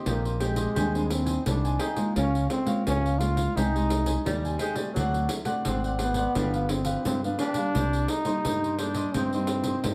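A breathy, close-miked trombone carries the melody up front with jazz-style vibrato in this lively, bittersweet samba and choro fragment cut from a longer piece, while a bright, direct fingered electric bass sits equally forward beneath it. Crisp picked cavaquinho, a thumb-plucked classical nylon-string guitar in the background, and a jingly, compressed, saturated pandeiro fill out the accompaniment. A mellow, subtone tenor saxophone with scooped notes adds a brief second line from 4.3 to 5.4 seconds, all set in a small, wet room heard from further back.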